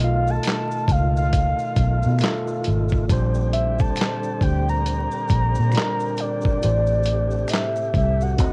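Swung sixteenths at a relaxed 68 BPM carry this laid-back neo-soul R&B excerpt, where a thumpy, compressed sampler-style drum kit with handclaps, hi-hat, kick and snare and a dark, round, foam-muted electric bass sit up front beneath a full-bodied octave-layered synth lead singing the melody through chorus, phaser and vibrato, while a barky overdriven tine electric piano and a thick tonewheel organ turning through a slow rotary speaker fill the B7#11, Bb69 and Am7 changes, distant maracas and finger snaps slip in at 0.3 s, and cassette-tape grit plus vinyl crackle over a dry home recording lend the whole a dusty, intimate glow.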